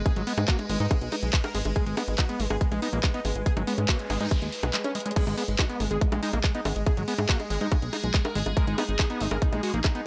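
Hypnotic and driving, this psychedelic trance excerpt runs on a tight, up-front electronic kick and a layered kit of metallic hats, handclaps, bongos and crash, with a punchy, funky analog bass plucking beneath. A thick, detuned unison lead carries the melody with vibrato and dub echo, while a squelchy, gritty acid bass riffs alongside, a very quiet formant-sweep wobble bass adds a second line, and an evolving wavetable pad with phaser and sidechain pumping morphs in the background. A faint noise sweep enters at 4.0 seconds ahead of a drum fill at 5.0 seconds, all in a fairly dry mix.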